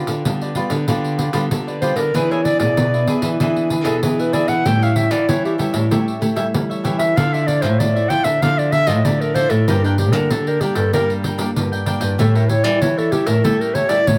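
A mellow, close-miked clarinet leads this lively, yearning samba and choro excerpt at 96 BPM, playing a classical-style solo up front with plate reverb and tape echo. Beneath it, a crisp, picked cavaquinho and a small, fingerpicked nylon-string guitar with audible finger squeak comp through G7/D, E7, A7, Dmadd9 and Gm. A second nylon-string guitar carries a classical bass line in the background, while a jingly, compressed pandeiro played with soft hands joins at 0.1 seconds, all captured with close, detailed microphones in light reverb.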